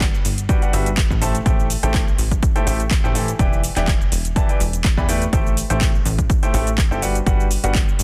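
A dense, heavily limited and nearly dry mix carries this soulful, bittersweet piano house excerpt at 124 BPM in A dorian, where a punchy, overdriven electronic kick and a house kit of handclaps, shaker and metallic hi-hats with a lightly swung 16th-note feel sit alongside a funky, plucky sawtooth-and-square analog bass pumping from the sidechain, while a clear baby grand piano riff, roughened with 12-bit sampler grit, pumping and digital delay, enters at 0.5 seconds over chords moving from Gmaj7 through Am7 and Em7.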